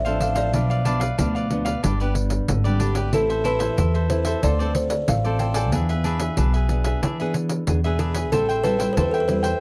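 A straight 4/4 samba and choro groove at 92 BPM in A minor rides on a jingly pandeiro and an up-front, woody pizzicato upright bass, carrying a lively yet yearning mood through a chord path from Dm7/A and Bdim to G, Am, Dm7, E7 and Am7. A buzzing kalimba, plucked with a thumbnail and ringing, takes the melody between G4 and G#5, while a crisp picked cavaquinho and a fingerpicked classical nylon-string guitar with old strings fill in the accompaniment. The sound is a dry, close 1970s-style studio recording with little reverb, cut from a longer piece and lasting about 9.6 seconds.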